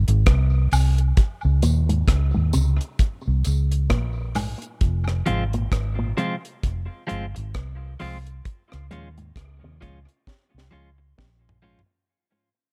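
A round, foam-muted bass and a dry reggae kit with a high-tuned snare and tight kick open this deep, heavy dub reggae excerpt at 66 BPM with swung sixteenths, joined briefly by tape-echoed tambourine and woodblock, then by an envelope-filtered guitar playing compressed, echoing arpeggios from 1.6 seconds and a dark, clean picked guitar accompaniment with tape echo from 5.3 seconds, all moving between F minor and D-flat in a small room ambience as the passage fades out and a drum fill arrives at 10.3 seconds.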